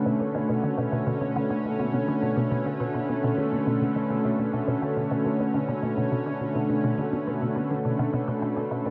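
Cosmic and hypnotic, this short excerpt of sequencer-driven ambient space music rests on a single Bm7 chord in B minor at 104 BPM, in a straight 4/4. A lush, thick unison pad of detuned sawtooth and square waves holds bright, sustained chords up front, colored by chorus. Beneath it, a juicy, squelchy blip pluck repeats a low riff through phaser, analog chorus and tape echo, while a huge 7.1-second reverb and the warbly pitch drift of worn cassette tape wash over the recording.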